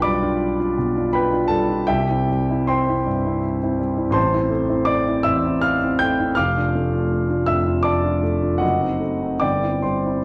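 Set in a dark, reverberant recital hall, this passionate yet hopeful romantic character piece for solo grand piano, cut from a longer work, sways in an unhurried three-beat rubato, the intimate, up-front piano ringing with long sustain and audible action noise as its harmony moves from a G7 through C, Am and Dm/F to a searching F#dim7 before settling on C/G at 9.4 seconds.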